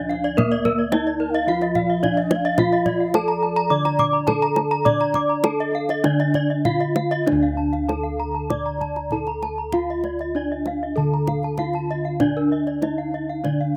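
Balinese gamelan in D pelog at 97-109 BPM, brilliant and hypnotic, where an up-front, wooden-mallet bronze metallophone carries the melody over shimmering paired-tuned arpeggios from two bright, horn-mallet metallophones with slapback echo, round beating bossed gongs on the bass, soft-handed kendang, a background metallophone accompaniment that stops at 7.3 s, and a distant, airy bamboo xiao heard only from 1.3 to 4.9 s, all in a dry outdoor sound cut from a longer piece.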